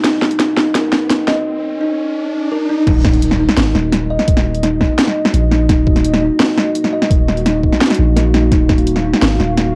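A home cassette recording with light reverb gives this half-time drum and bass excerpt a worn, intimate sound, spacious yet heavy, at 170 BPM in Eb minor. It opens with a build-up: a woody, hollow kalimba rings out vintage, band-limited arpeggios through analog delay under a filter sweep, while a dark, detuned analog pad holds deep, moody chords with chorus and sidechain pumping. The overdriven drum kit, up front with a cracking snare and bright hats, plays a fill before a short break, as an electronic riser builds toward the drop. At 2.9 seconds an impact lands, and a knocking, overdriven electronic kick joins a long, mellow 808-style sine bass, saturated through tubes and sitting up front with a fast attack and decaying tail. The drop then rides in half-time with that deep low end beneath the pad's slow, sustained wash and the ringing thumbnail plucks of the kalimba.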